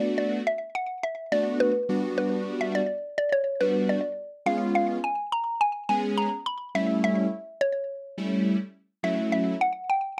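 A woody, round synth pluck carries the melody from the opening moment, sitting up front over a fat, sawtooth polysynth whose detuned, sustained chords fill out the accompaniment beneath it. This short pop fragment feels bittersweet yet energetic, moving in a straight, steady four through a Bm7, Gmaj7, C#7 and A7 progression. The mallet-like lead has a percussive, decaying FM character with a noise layer, coloured by chorus, phaser and a slapback echo. The polysynth is bold and full-bodied, with a moving notch in its tone and a chorus that keeps its edge mellow. The sound is dry and close, in the manner of a 1970s studio, with a moderate booth ambience around the parts. A build-up begins at 9.0 s as the harmony shifts to F#m7, the polysynth drops away at 9.6 s, and the pluck rings on until 10.0 s.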